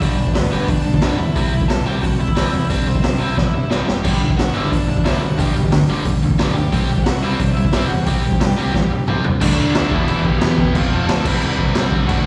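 Punk rock at 179 BPM with an upbeat, rowdy drive, heard live through a venue PA in this short cut: a raw garage drum kit sits up front, gritty and saturated with a high-tuned snare and punchy kick, under a crunchy overdriven guitar riff with slapback echo, a growling picked bass in the background, a biting lead guitar melody carrying overdrive, slapback and digital delay, and a second overdriven electric guitar riff that enters at 4.0 seconds, while drum fills at 3.4 and 8.7 seconds lead into a new section at 9.4 seconds moving through D, Em, F and C.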